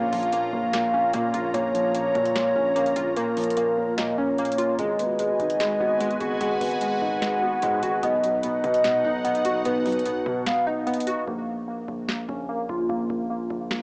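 Lo-fi and cassette-worn, this brooding half-time trap excerpt sounds like a home recording played back through a small speaker, wrapped in a digital ambience. A hollow, woody clarinet-like synth lead carries the second line with chorus, vibrato and tape echo. Beneath it, a dark, mellow grand piano supplies muffled accompaniment, and a bright, evolving sawtooth pad sustains chords with slow filter swells. Glassy, detuned digital keys sit up front with chorused, echoing arpeggios, while a heavy distorted 808-style bass growls in the background. A barely audible downlifter opens the excerpt, and a dry analog drum machine with a deep kick, tonal snare and metallic hats enters at 0.1 seconds, with the kick dropping out at moments. At 11.3 seconds the lead, piano and pad fall away for a break, leaving the keys, bass and drums under a filter sweep until the cut at 13.8 seconds.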